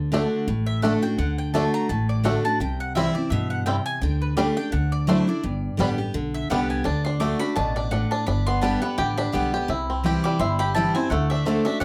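The mandolin leads from its entry at 0.7 s: a woody, double-strung, picked voice playing warm stabs high above the band in this lively, virtuosic bluegrass excerpt. It moves at a brisk 169 BPM in 4/4, with a light swing on the eighth notes. Up front, the banjo, played with fingerpicks, spins twangy, percussive arpeggios, while the picked dreadnought acoustic guitar gives a full-bodied accompaniment. Underneath, the pizzicato upright bass adds a growly, thumpy low end. The harmony circles around D, C and G, with a brief Dsus4 and Dadd9 colour, and the passage repeats its opening section at 6.9 s. Close, detailed microphones and a touch of reverb keep the acoustic instruments intimate and crisp.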